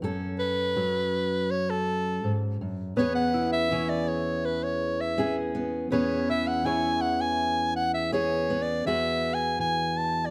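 Acoustic folk for a duo or small band, moving at an unhurried 82 BPM in a straight 4/4, this brief excerpt from a longer piece carries a nostalgic, warm mood. A fingerpicked steel-string acoustic guitar opens at 0.0 seconds and sits up front with a concert-ready tone, laying down accompaniment over chords that shift from F#m to C#m7/E and settle on Eadd9 near the end. A soprano saxophone joins almost at once to carry the melody as a solo through the main passage, its classical-style phrasing colored by vibrato and placed close to the listener. At 3.0 seconds a fingerpicked twelve-string acoustic guitar adds arpeggios with a dark, boxy, archtop character, its octave-doubled strings giving a shimmering edge before it drops out at 8.9 seconds. Close, detailed microphones capture the playing in a large studio with moderate reverb, lending the parts a sense of space while keeping their detail clear.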